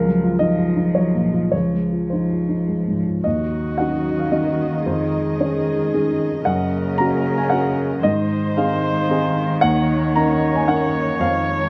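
Close, detailed microphones and little reverb give this short neoclassical piece for piano and strings an intimate, present sound, cut from a longer work. Set in 3/4 at 113 BPM with a rubato feel and tuned to A4 = 439 Hz, it carries a hopeful mood. A woody upright piano sits up front, supplying the accompaniment across a broad span from Db2 to Bb5. A veiled, muted cello plays a second line from the start, played con sordino by one player with light vibrato, soft attacks, portamento and a distant placement. At 3.2 s a single dark-toned viola enters with accompaniment, and a muted chamber string section follows at 3.3 s with sustained chords in the background. The harmony moves from Ebmadd9/Db and Fm7/Db through Ebm7, Dbadd9/F, Gb and Ab before settling back on Ebm7.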